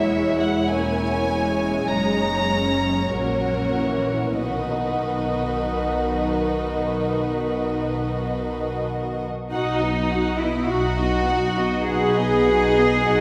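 Bathed in the long, wet reverb of a church or concert hall, this short serene passage from a slow romantic movement for string orchestra drifts in B major at 46-52 BPM with a gently elastic rubato. A close, intimate violin section carries the warm, soft-edged melody with vibrato, while a darker violin section shapes a second line above woody, lush violas in the accompaniment. Rich cellos and double basses, pure and floating, anchor the bass as the harmony eases from C#m/E through F#13 to rest on B at 4.4 seconds, and the opening idea returns at 9.5 seconds.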